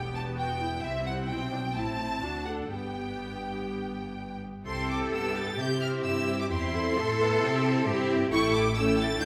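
Lush, bowed second violins, violas, cellos and double basses open this lively, graceful classical-period movement for string orchestra in G major. At 0.2 s a clear, intense first violin section enters high above them to carry the melody from a distant position. The quick tempo of about 121-137 BPM in 4/4 has a rubato feel, and the music turns to C major at 4.7 s, with smooth, even violas and basses, close cellos and focused second violins, all with a rich vibrato, bathed in a wet scoring-stage reverb in this short excerpt.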